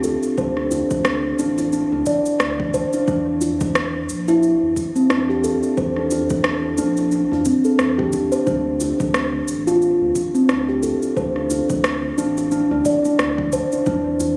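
Heard through a phone in the room and then bathed in a huge ambient studio reverb with a long 6.2-second tail and added compression, this short organic downtempo excerpt feels mystical and hypnotic, with a lilting swing on the sixteenths. A round, pure steel tongue drum sits up front, struck with rubber mallets and ringing out meditative arpeggios through tape echo over a harmony that drifts between D5 and E7 colors. Beneath it, a deep sine sub bass with a fast attack and mellow sustain breathes with sidechain pumping. An overdriven electronic cabasa and rim click, re-recorded in a large room, carries the groove alongside a punchy, layered electronic kick that enters at 0.4 seconds. A medium-tuned acoustic djembe with metal rattles stays close and dry in the background, adding an earthy texture until the piece cuts off at 14.4 seconds.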